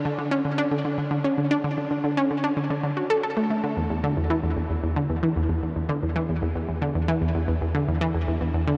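A solo analog pluck opens this ambient piece at 0.1 s and carries it alone through to 8.8 s, a short cut from a longer work with a cosmic, expansive mood. The synth has a round, detuned sawtooth tone with a fast attack and a decaying filter pluck, sounding bright and up front as it moves between E2 and A4. Chorus and tape echo thicken each note, and a huge, wet ambient reverb with a 6.9-second tail stretches the sound into a vast space. The pulse sits at 113 BPM in a straight 4/4. Overall the production is dark and warm, framing the single synth in a deep, enveloping atmosphere.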